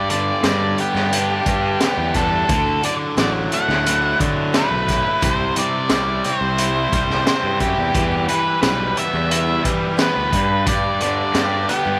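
A straight 4/4 groove at 88 BPM drives this swaggering, gritty classic rock excerpt. A raw garage drum kit sits up front with a punchy kick and high-tuned snare, joined by a growly fuzz bass, a biting overdriven riff guitar, a very quiet sludgy distorted guitar and a faint picked steel-string acoustic, while a dark octave-fuzz lead carries the melody over a G, Dadd9, C, Em progression. At 8.0 seconds a very quiet, reedy tonewheel organ enters with sustained chords through a slow rotary speaker, and the whole band sits in light small-room reverb.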